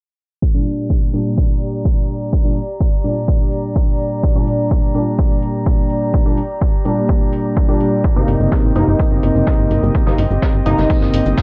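Dry, with a low-pass filter shading the overall sound, this short cut from a longer melodic techno track moves at 126 BPM in a straight 4/4, dramatic and driving in G minor. A punchy analog kick sits up front from the start, joined by a soft, breathy pad of triangle, sawtooth and noise that rises slowly and pumps under sidechain compression alongside its chorus. The sync-sweep polysynth carries the stabs: edgy and nasal with detuned sawtooth and oscillator sync, bright and up front, its filter sweeping throughout while chorus, sidechain pumping and tape echo colour it. A layered electronic hi-hat and shaker, re-recorded in a large room, sits low beneath them as the harmony holds on Gm before shifting to Cm7/G at 8.0 seconds. There a distant jazz brush kit with a high-tuned snare and rolled-off top enters in the background, and at 8.2 seconds a funky, plucky analog bass of sawtooth, square, sine, ring modulation and wave-folding arrives up front, its fast attack decaying between G1 and A1 as it pumps with the kick.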